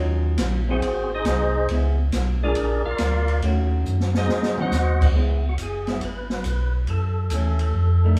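The excerpt opens on a hollow-body jazz guitar comping in dark, clean picked chords over a round tonewheel organ bass line with key click and slow rotary speaker, as the band moves through a minor-key progression that begins on D#m9. At 139 BPM with a swung 4/4 feel, this bluesy, soulful soul jazz organ trio brings in an up-front acoustic drum kit with dark cymbals and a boomy kick at 0.4 seconds, and a fat, lightly overdriven percussive organ melody with third harmonic percussion solos from 0.7 seconds. The drums play a fill at 3.9 seconds before a new section, the whole band heard live together in a small stone room with moderate reverb.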